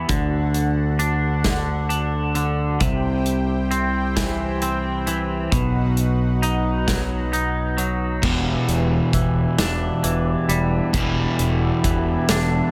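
A twangy, compressed electric guitar opens this brooding, melancholic post-rock excerpt with picked arpeggios bathed in lush chorus and analog delay, alongside a brassy, detuned sawtooth pad holding soft-attack sustained chords set back in the mix and a growling fingered bass with overdrive. A boomy, up-front rock kit of kick, medium-tuned snare, hi-hat and crash cymbal joins almost at once, moving in a slow, straight-feeling 6/8. The harmony steps down through D, C and B. At 8.2 seconds it settles on E minor seventh, and an overdriven semi-hollow guitar enters with a picked low riff, the loudest part in the mix. Light reverb and a small room ambience keep the sound close and heavy as the passage is cut off at 12.7 seconds.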